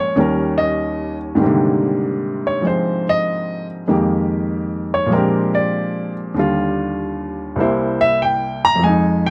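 A baby grand piano opens the recording and carries it from start to finish, playing solo in a sophisticated jazz vein. Its tone is warm and natural, sitting up front in a club room with a moderate, short reverb. The tempo is 97 BPM in 4/4, with a lilting swing on the eighth notes and the key centred on Eb major. The harmony moves through rich extended chords, from Eb7 to Abmaj9#11, then Fm11 and Bb13 settling on Ebmaj9 before a C7 turns the phrase onward. The piano spans a broad register from deep bass notes to bright upper tones in this brief 9.3-second cut from a longer piece.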